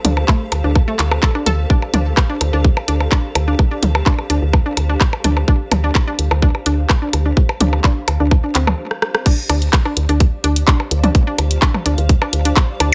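Quirky and clinical, this minimal techno excerpt, cut from a longer piece, rides a tight, tape-warm electronic kick that enters at 0.3 seconds under a squelchy, resonant blip pluck riff with chorus, tape echo and sidechain pumping, over a round, woody FM bass that pumps as well. A layered garage drum kit of crash, handclaps, hi-hat and rim click sits up front beside electronic toms and percussion blips trailing digital delay, while a very quiet flickering grainy texture drifts alongside a cloudy, blurred granular cloud pad in the background. The groove stops at 8.8 seconds for a brief drum fill before the drop lands at 9.3 seconds, all within a digital ambience.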